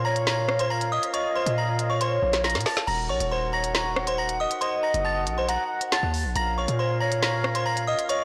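Hip hop drill at 138 BPM with a half-time feel, this menacing, ominous fragment in Bb harmonic minor moves from Bbm to Ebm at 2.9 seconds and back at 6.4 seconds. A delicate, tinkling FM synth tine bell carries the melody up front with chorus, phaser and digital delay, over sustained chords from a breathy small flute group with vibrato and lifted highs, while a velvety sawtooth synth lead adds a smooth second line with chorus and delay. Underneath, a distorted, heavy 808-style bass hits hard and decays, and an electronic drill drum kit with a woody snare, crisp hats, rim clicks and crash cymbal, roughened by 12-bit sampler grit, plays a fill at 2.4 seconds, all in a blown-out, overdriven recording with light reverb.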